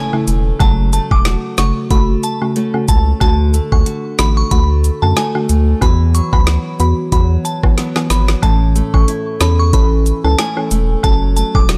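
Dancehall with a sunny, bouncy swing, where an up-front island pop drum kit with a knocking kick, woody snare and metallic hats joins a deep, round analog bass at 0.3 seconds beneath a soft round pluck with chorus, boxy fingerpicked nylon-string guitar arpeggios, a crystalline, warbling synth bell melody carrying chorus, phaser and tape echo, close and dry woodblock and cabasa in the background, a barely audible impact at 0.2 seconds, and a drum fill at 7.8 seconds, all within a digital ambience.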